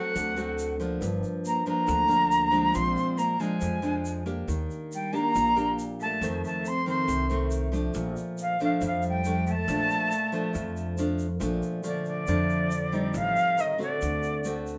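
Bossa nova with a relaxed, sunny mood, this short excerpt cut from a longer piece has a jazz flute carrying the melody in an airy, expressive voice with vibrato and a chiffy attack, while a full-bodied, fingerpicked nylon-string guitar sits up front with the accompaniment. A bowed cello played sul tasto floats softly in the background as a second line, an upright bass supplies a woody pizzicato bass, and a grainy, bright egg shaker adds light percussion. The band plays live in one room with moderate studio reverb, moving through chords such as Gm7, Ebmaj7 and Bbmaj7 before turning to Am7b5 near 13.1 seconds and D7 at 14.0 seconds.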